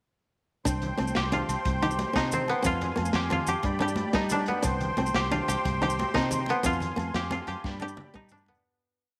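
Danceable and warm, this highlife guitar-band piece rolls along in a 12/8 groove over a Cm, Fm and G progression. A gritty, saturated breakbeat kit with a tight kick sets the pulse, while a dark, round fingered electric bass plays a dotted figure and a fingerpicked flamenco guitar repeats an ostinato. A reedy, shimmering musette accordion holds sustained chords, and ringing agogo bells and high-tuned congas sit in the background while close, grainy maracas keep an even pattern. From 1.2 seconds a woody, up-front koto played with fingerpicks adds arpeggios with tape echo. The piece fades out from 6.6 seconds, under a drum fill that begins at 7.6 seconds.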